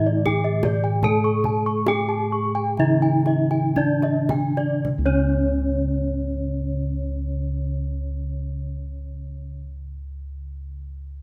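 A bright, ringing bronze metallophone struck with a horn mallet leads this brilliant, shimmering passage of Balinese gamelan, its paired tuning producing shimmering beats as it carries the melody up front in a C# pelog scale. Beneath it, bossed gongs supply a round, dark and smooth bass, also up front, their beating tone spanning C#2 to C#5. A mellow, soft metallophone played with padded disc mallets sits in the background with the accompaniment. Two more metallophones struck with wooden mallets spin arpeggios in the upper register, mid-forward in the mix, and the kendang adds tight, acoustic hand drumming from 0.3 until 5.4 seconds. In 4/4 with a straight feel, the tempo ranges from 53 to 82 BPM and slows through the first section before a second section begins at 4.9 seconds. Close, detailed miking with light reverb captures this short extract from a longer piece.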